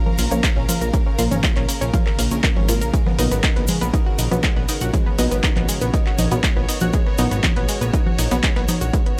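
Melodic techno at 120 BPM in 4/4, melancholic and dramatic, moving from Bbm to B6 in this short cut from a longer piece. An up-front, punchy electronic kick and a tape-toned analog drum machine with congas, handclaps and hi-hat sit alongside a fat, detuned sawtooth bass with tube saturation, while a round, bright analog pluck spins arpeggios through chorus and analog delay over muted, detuned dub chord stabs. In the background sit a tense, string-like drone with vibrato and built-in reverb, a lush, clear studio string section, a grainy close cabasa and a very quiet gritty sampler-style kit of hi-hat and snare, with sidechain pumping breathing through most parts in a dry, hardware-driven mix.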